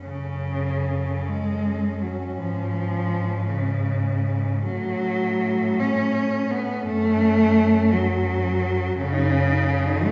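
A slow, melancholic and elegiac classical passage for cello ensemble opens with four bowed cellos sounding together from the first moment, each played by one player. It is a short cut from a longer piece. The music moves in a rubato 6/8 at roughly 47 to 59 beats per minute, counted in dotted quarters, in F# minor. The most prominent part is an up-front accompaniment cello with a rich, focused tone, though it also sounds somewhat distant. Beneath it, a warm bass cello plays with a soft attack, expressive portamento and vibrato. A second line sits in the background with its own sliding, vibrato-laden expressiveness. Above them, the clear, focused melody cello sings very quietly with vibrato. The harmony passes from F# minor through C#7 over G# and F# minor over A, then returns to F# minor before settling on a half-diminished D# chord over F# as the passage ends at 10.1 seconds. The whole ensemble is wrapped in the wet reverb of a recital hall and heard from further back in the room, which gives it a soft, dulled top end.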